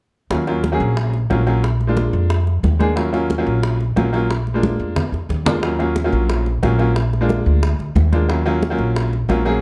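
A thumpy, woody upright bass sits up front, plucked pizzicato on gut strings, and anchors this sultry, sophisticated slice of Afro-Cuban jazz in a straight four. Beside it, an upright piano with a boxy tone and short sustain comps through the middle register, also close to the listener. The harmony rocks back and forth between Ebm7 and Bb7 throughout. Tight, high-tuned bongos struck with hard hands add crisp detail, while ringing congas tuned to a medium pitch stay in the background, both heard in a live room. A drum fill runs from 4.6 to 5.6 seconds. Light reverb and a dark, warm production round out this cut from a longer piece.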